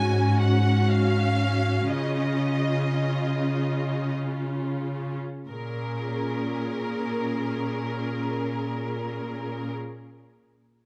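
In free time, this cinematic, emotional film score for orchestra slows over its first 5.5 seconds before easing into a second passage, its sorrowful, bittersweet mood set in Bb minor. A string orchestra plays throughout the roughly ten-second fragment cut from a longer piece: the violin section carries the melody between Bb4 and Ab5 with a focused, vibrato-laden tone that sits at a slight distance. Beneath it, the viola section supplies lush bowed accompaniment, while the cello section holds the bass from Ab2 to Db3, intense and up front with a smooth top. The harmony moves from Ab7sus4 to Dbadd9 at 1.9 seconds, then settles on Bbm7 at 5.5 seconds. Close, detailed microphones and light reverb give the ensemble an intimate studio presence.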